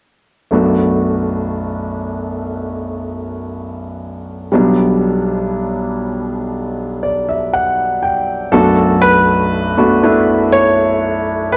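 A slow, straight 4/4 pulse at 60 BPM carries this emotional, melancholic pop ballad fragment in B minor, where a clear, intimate grand piano plays the accompaniment from 0.5 seconds, its long sustain and audible action noise sitting up front, moving from Bm7 to Gmaj7/B. After a piano fill at 6.5 seconds, a brilliant concert grand enters at 8.5 seconds with a short-sustained melody as the harmony returns to Bm7. Both pianos carry a cassette tape coloring, and a moderate studio reverb wraps the homely, polished sound.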